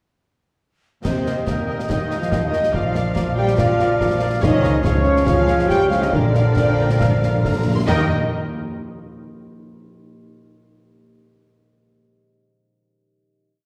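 A heroic, soaring adventure-film cue in Eb major at 141 BPM opens at 1.0 seconds with nearly the full orchestra, the oboe, French horns, harp and double basses joining a moment later: a concert snare drum, clash cymbals with a dark edge, concert bass drum and concert toms set a close, dry marching snare over a bass drum on the beat, while timpani with medium mallets strike single strokes on the bass notes. A distant studio violin section carries the lush, vibrato-rich melody from the background, doubled at the octave by a mellow, hollow flute and a distant cello section, with the low end anchored by a rich double bass section holding sustained bass on the beats. Second lines come from a very quiet, smooth-topped symphonic violin section, a very quiet, soft-attacked clarinet and a clear oboe, while an even viola section supplies repeated-note accompaniment and a bright concert harp sweeps ringing arpeggios across its range. 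Mellow, vintage-toned trumpets punch tight stabs in the rhythm of the tune, a dark, roomy French horn section and quiet trombones hold sustained chords, and the harmony moves through Eb, Bb, Db and back to Bb. The timpani return for a fill from 6.1 seconds that rolls into the final Eb chord at 7.9 seconds, where the harp rings on past the rest of the orchestra, all bathed in the wet reverb of a scoring stage heard from further back in the room.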